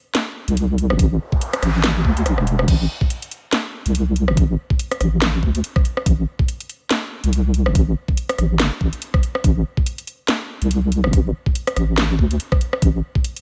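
A garage drum kit opens this meditative, heavy deep dubstep excerpt in A phrygian, its cracking snare, metallic hats, rim click and crash sitting up front in studio reverb over a half-time 142 BPM groove with swung 16ths. A deep, soft wobble bass joins almost at once, with a dark square-and-sine tone, chorus, a fast attack and a compressed sustain, and a layered, knocking electronic kick arrives at 1.0 s, with both drum parts carrying a tape-warm grain. An electronic noise sweep runs from 1.2 to 2.7 s, and near its end the kick drops out for a brief drum fill, all within a dry, close-sounding mix.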